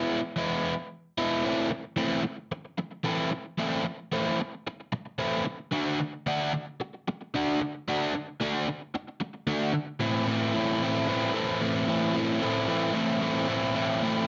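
Cool and moody, this short rock cut from a longer piece moves at 112 BPM in a straight 4/4, in A dorian and tuned slightly sharp of standard pitch. A lone electric guitar carries everything from 0.0 to 14.3 seconds: crunchy and overdriven, picked and double-tracked, sitting up front with a slapback echo as it ranges from A2 to F#4 over a brief E chord, then Am, D at 5.7 seconds, and back to Am at 10.0 seconds. The sound is dark and rolled-off at the top, wrapped in a wet small-room reverb.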